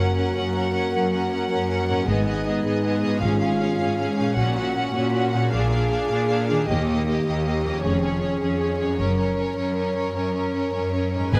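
Determined and swashbuckling, this cinematic orchestral build-up in 12/8 at 104 BPM pairs a lush, vibrato-laden violin melody with a second violin line over rich viola accompaniment, mellow sustained French horn chords, a very quiet ringing harp arpeggio, smooth cellos and warm double basses carrying the bass, and close, dry timpani in the background from 2.1 to 3.8 seconds and again at 11.3 seconds, all set in a moderate scoring-stage reverb as the chords travel from F# through G#m and A#7 to D# before returning to F#.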